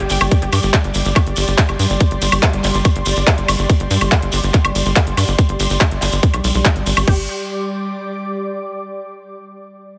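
A bright, detuned unison pluck with tape echo and sidechain pumping flickers in the background alongside a punchy sawtooth sequencer bass, an overdriven drum kit of crisp hi-hats, handclaps, woodblock and crash, and an ethereal, chorused pad, while a grainy, distant shekere adds texture from 0.1 seconds, before an up-front overdriven electronic kick lands at 0.3 seconds in this driving, hypnotic 142 BPM psychedelic trance excerpt, whose heavily compressed, radio-like sound carries light reverb and whose pluck returns at 7.1 seconds while the pad lingers until 8.7 seconds.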